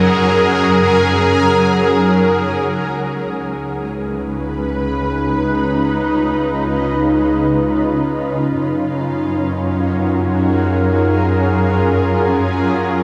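Serene and warm, this ambient excerpt floats in a huge, wet reverb. A bright, shimmering pad with an octave-up glow and detuned, warbling chorus holds sustained chords up front, while a lush bowed cello section carries smooth, vibrato-rich bass notes and a very quiet nasal, organ-like drone hums only through the first 3.0 seconds. A mellow vibraphone played with soft mallets rings close and dry in arpeggios until 8.6 seconds, as the harmony drifts from Gb to Db7 and settles on Gbmaj7.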